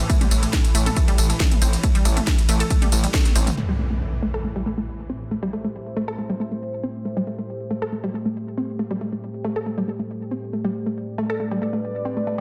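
A juicy, squelchy blip pluck sits up front through this hypnotic, relentless peak-time techno excerpt, its resonant, detuned riff colored by chorus, tube saturation, delay and sidechain pumping at 138 BPM in A minor. The opening drop pairs an overdriven, heavy electronic kick with a layered techno kit of cracking snare, smooth filtered hats, ride, tambourine and toms. Beneath them a gritty, nasal, distorted synth bass pumps on a low A while a warbling, swarming drone hovers in the background through phaser and reverb. A drum fill closes the drop at 3.1 s, and by 3.6 s the bass, drone and drums have fallen away as an electronic impact hits and a filter sweep runs over the synth arpeggio. From 5.1 s a deep, moody pad, dark and ring-modulated with a slow attack and chorus, fills out the space alongside the pluck in a dense, heavily limited mix with light digital ambience.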